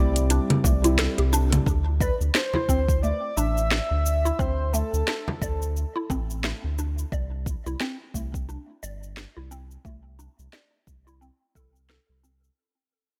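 A round, dark analog bass sits up front with sidechain pumping in this meditative organic downtempo excerpt, beneath a woody FM synth pluck playing arpeggios through phaser, ensemble chorus and delay, with a filter sweep on the pluck running through the fade-out from 1.7 s. A breathy, flute-like synth lead carries the melody with analog chorus and digital delay until 6.1 s, while a worn, slightly out-of-tune tine electric piano with pumping and delay plays accompaniment only in the opening 1.7 s. A produced afro-pop kit with sharp snare, metallic hats, congas and shaker is soon joined by a deep electronic kick and a large, dry frame drum set in the background, all in light reverb with a swung 16th-note feel.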